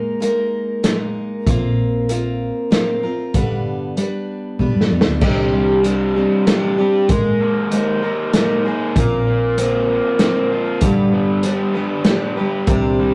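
Folk rock and heartland rock in a reflective, wistful 3/4 at 96 BPM in C minor, this rough rehearsal-room cut from a longer piece opens on a dark, full-bodied picked dreadnought acoustic guitar up front, joined by a muffled, lo-fi vintage drum kit with a punchy kick and rolled-off top, then a round hollow-body electric bass at 1.5 seconds, until a drum fill ushers in a double-tracked, overdriven garage guitar riff at 5.2 seconds over chords moving from Absus2 and Bbsus2 to G and Cmadd9 in a small, moderate room.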